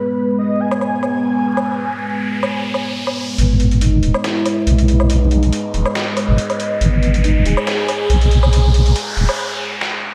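A dreamy, reverb-soaked mix with a faint vinyl crackle and a lush digital hall ambience frames this heavy, meditative slice of deep dubstep, cut from a longer piece, moving at 140 BPM in a half-time 4/4 feel with a light swing in G# minor. A dark, moody ambient pad holds sustained chords on G#m from the opening, its slow-attack, detuned sawtooth layers thickened by chorus and its own reverb, while a breathy, flute-like synth lead carries the melody with a soft attack, vibrato and a dub echo trailing behind it. A gritty, pitched-down trip hop drum kit with a sampler character comes in at 0.7 seconds, its hi-hat, medium-tuned snare and woodblock thinned by high-pass filtering, and an electronic riser and noise sweep starts building from 1.1 seconds. At 3.4 seconds a deep, up-front wobble bass arrives, a compressed, sustained blend of sawtooth and sine that dominates the low end, as a filter sweep moves across the lead and the build-up gathers. 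The bass and pad drop out at 9.3 seconds, leaving a short break where a noise sweep and a drum fill close out the passage.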